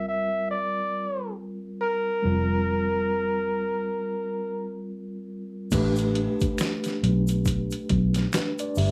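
A soulful, late-night neo-soul fragment opens with a jazz-style flugelhorn carrying the melody with light vibrato and a slapback echo, over a mellow, clean tine electric piano and a dark, round, foam-muted fingered electric bass. The flugelhorn bows out at 4.8 seconds, and at 5.7 seconds a gritty, compressed, pitched-down boom bap drum kit with a thumpy kick and medium-tuned snare arrives, joined by a close, dry tube shaker and finger snaps set low in the mix. The swung groove sits in a small room with light reverb.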